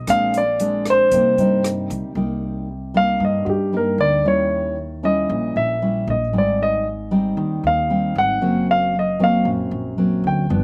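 Bossa nova with a smooth, intimate mood, this fragment of a longer piece sets a polished grand piano melody over woody pizzicato upright bass, a dark, full-bodied fingerpicked nylon-string guitar with audible finger squeak, and an open jazz drum kit of hi-hat, rim click and boomy kick that drops out at 2.0 s. The up-front piano, with short sustain and a slapback echo, takes a solo from 2.2 s over the guitar and bass. The sound is dry and intimate, with little reverb.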